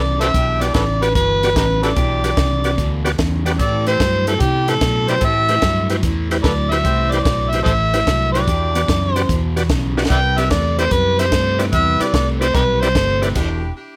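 A gritty, amplified harmonica with light vibrato, scooped notes and tongue slaps leads this brooding, soulful electric blues shuffle from the first moment over a hollow-body guitar riff and a round, foam-muted fingered bass, joined almost at once by a thick tonewheel organ with key click through a slow rotary speaker, a distant jazz-style horn section adding stabs with digital delay, and a dry cocktail drum kit with a punchy kick, high-tuned snare and dark cymbals that plays a fill at 9.9 seconds before a stop at 13.4 seconds, all set in a small room.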